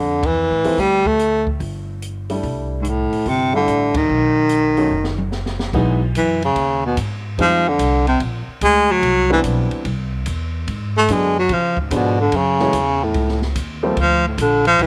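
A breathy, whispered baritone saxophone sits up front with light vibrato and a soft attack, carrying the melody of this relaxed, swinging small-group jazz excerpt in the swing-and-bop style before taking an intimate solo from 5.7 seconds. A thumpy pizzicato upright bass on woody gut strings and a warm upright piano back it, while an open acoustic drum kit with dark cymbals, a high-tuned snare and a boomy kick sits further back and plays a fill just before the solo. Band accents land at 0.2 and 3.9 seconds, and light reverb lends a natural small-room ambience.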